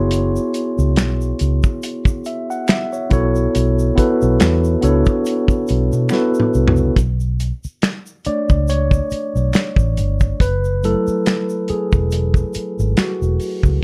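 Dark, lightly reverberant production frames this sultry, introspective neo-soul R&B excerpt at 70 BPM in B minor, where a mellow, clean tine electric piano heard through its built-in speakers plays sus4 and minor ninth chords, a round, foam-muted fingered electric bass and an up-front soul drum kit with a tight kick and rolled-off top ride a gentle sixteenth-note swing, a quiet tube shaker and finger snaps sit in a small room behind them, and after a drum fill at 6.1 seconds the electric piano takes a solo from 7.0 seconds.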